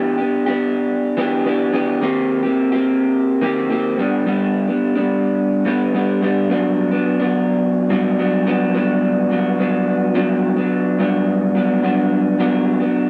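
A home cassette recording in a booth with moderate ambience gives this short indie pop cut from a longer piece a hazy, lo-fi character, with a solo electric guitar through a small old amp sitting up front, slightly broken-up and compressed under lush chorus, warbly pitch drift and tape grain. At 107 BPM in a straight 4/4 and G major, the picked guitar moves from Em7 through Eb6 to G and Gmaj7 across its G2 to G4 range, with a new section arriving at 8.7 s. The mood is nostalgic and sunny.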